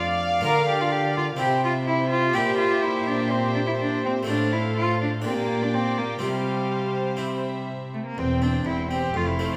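Festive and lively, this brief cut from a baroque-style concerto movement at 124 BPM puts a rich, nasal solo cello up front from 0.4 seconds over gut-strung period-style violin sections, a reedy viola section, a dark cello section bass and a round Flemish-style harpsichord, with a background double bass section entering at 8.2 seconds, all set in a wet recital hall.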